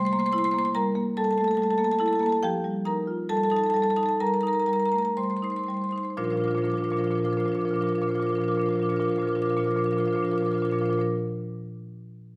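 Loosely rubato in 4/4 at 58-74 BPM, this warm, flowing contemporary classical excerpt for solo marimba in Bb major slows down over its first 6.2 seconds before turning to a new section. The marimba, played with medium hard mallets on padauk bars, sounds woody, bright and up front as it spans Bb2 to D6, moving from C7 through F9sus4 to settle on Bbadd9 at 6.2 seconds. Its percussive, airy attacks sit in a moderate recital hall reverb.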